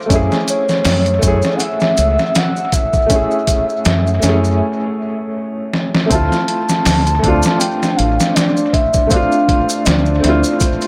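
A woody upright piano with tremolo, gritty sampler texture and tape echo opens this brooding, cinematic trip hop excerpt over a deep, detuned ambient pad and a barely audible, wind-like noise texture, while a muffled, thumpy sampler-style drum kit, ringing maracas and a round, punchy dub bass settle in beneath. A pure, breathy sine lead with vibrato and portamento carries the melody through chorus and cassette coloring; a filter sweep shapes the piano through a break that begins at 4.6 seconds, and a drum fill caps the break before a new section arrives on Dm7 at 6.1 seconds. The echo-heavy mix sits in spring reverb, with the overdriven drums and tube-saturated bass up front.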